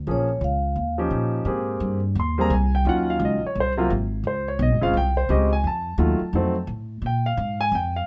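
This is small-group swing and bop jazz, relaxed and swinging, in a short cut from a longer piece. A woody, dark upright bass, plucked on steel strings, sits up front from the start and carries the low end through the whole passage. A vibraphone played with soft mallets rings out a brief, mellow melody with a slow motor vibrato, sounding only from 0.1 to 1.0 seconds. A polished grand piano, present and close, comps throughout across a broad range. At 1.5 seconds the harmony moves through rich chords such as Abmaj9, Ab13 and F7b9 before settling on a bare Bb7, all in a lightly reverberant room.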